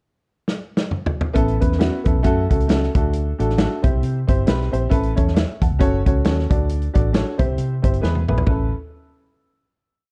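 A punchy acoustic drum kit with a medium-tuned snare and vintage sampler grit drives this joyful, uptempo 1960s-style soul piece in A major at 135 BPM, opening with a fill at 0.5 seconds before a round, foam-muted electric bass plays a syncopated line with chromatic approach notes and a woody, slightly detuned upright piano adds eighth-note chords and short fills through a brief verse that lands on a final Aadd9 chord at 8.5 seconds, all bathed in studio reverb within a dark, warm production.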